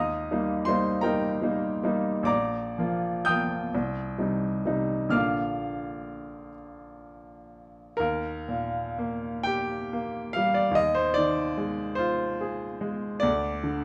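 In a rubato 6/8 that drifts between 39 and 54 dotted-quarter beats per minute, this dreamy, serene romantic nocturne in Eb major unfolds on a solo baby grand piano, its tone clear, polished and up front as it spans Bb1 to G6. Harmonies move from Eb through Bb and C minor, and a new section arrives at 8.0 s back on Eb, turning to Fm7 over an Eb bass at 10.8 s before the chords drop away at 13.2 s. The dark production sets the piano in a moderate, large studio reverb, and this short fragment is cut from a longer piece.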